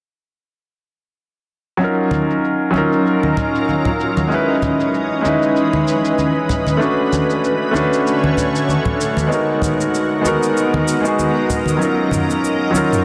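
A warm grand piano opens this wistful, relaxed sunset chillout excerpt at 1.8 seconds, sitting up front with a low-pass filter and tape echo, joined at once by electronic cabasa and toms whose low-pass filtering sweeps across the whole passage. Congas enter at 2.1 seconds with an acoustic, small-room character. At 2.6 seconds a shimmering ambient pad rises in with slow-attack sustained chords, its detuned, granular tone carrying an ethereal octave-up glow through chorus and its own reverb. The tempo is 96 BPM in 4/4 with a light 16th-note swing, and the harmony drifts through minor ninth chords, starting and ending on Ebm9 by way of Dbm9, Bm9 and Abm9. A wet concert hall reverb surrounds the parts, the master is dense, heavily limited and modern, and the layered, tape-tinged drums sit low beneath the piano.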